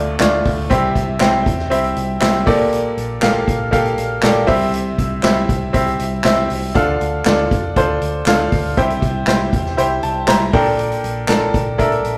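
A straight 4/4 groove at 119 BPM drives this uplifting, piano-led pop cut from a longer piece, set in C mixolydian over a cycle of Dm, C and Gmadd9/Bb. A brilliant, polished grand piano sits up front with short sustain and adds a fill at 9.8 seconds, while a dark, foam-muted vintage electric bass gives round low support. From 0.2 seconds a distant, roomy soft-mallet kit brings a punchy kick, medium-tuned snare, hi-hat and handclaps, opening over a very quiet electronic downlifter, all in a stone room with the gritty tube-saturated feel of a rough rehearsal-room recording.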